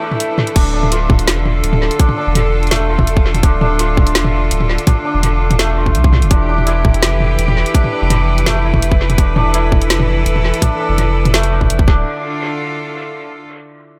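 A clear, biting chamber cello section holds sustained chords with light vibrato, pumping against the sidechain, while a mellow, shimmering santur rings out arpeggios through dub echo, opening this spacious, cinematic slice of half-time drum and bass. A layered kit of woody snare, bright hats, crash and toms that also trails dub echo comes in at 0.1 seconds, and at 0.6 seconds a tight, up-front electronic kick and a deep, saturated sub bass join it. The echo-heavy mix sits in light reverb, and the cellos and santur carry on alone briefly after the beat stops at 12.0 seconds.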